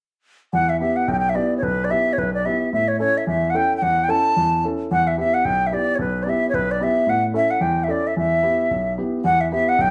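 This Celtic folk piece is driving, dark and lively, moving at a brisk 221 BPM in 4/4 with a swung eighth-note feel in E dorian, tuned slightly sharp to A4 = 442 Hz. A wooden flute carries the melody up front, its airy, warm tone marked by vibrato and tongued notes, with a slightly unsteady quality. Beneath it, an upright piano plays the accompaniment, sounding warm, woody and polished, with long sustain, and sitting just as far forward as the flute. Both parts enter together at 0.5 seconds and play through to 9.9 seconds, moving between E minor and A. A wet studio reverb places the pair further back in the room, and the passage is clearly cut from a longer performance.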